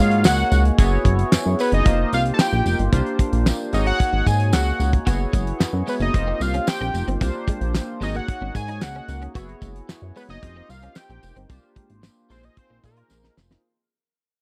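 A fat, warbling analog lead with tape echo sings over a glossy, mellow chorused polysynth and a dark, nasal chorused synth bass from the start of this slick, late-night early-eighties boogie funk at 112 BPM, as a dry, up-front 70s drum kit with a fat snare, tight kick, hi-hat and handclaps drives a straight 4/4 groove dusted by a jingly background tambourine, a bright, clean electric guitar riff slips in at 5.1 seconds, and the chords glide through sus4 ninth chords in a close, small-room fade-out that ends on a drum fill at 13.1 seconds.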